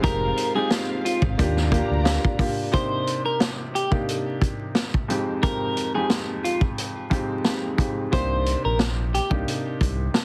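A clean, picked electric guitar carries the melody until 9.3 seconds in this gritty, reflective boom-bap hip-hop fragment, backed by a woody upright piano with a cassette-tape colour, lush bowed strings that stop at 2.7 seconds, a round, deep analog bass that returns at 8.1 seconds, and a vintage drum kit with a punchy kick and rolled-off top, the whole mix coloured by a heavily compressed radio sound, vinyl crackle and light reverb.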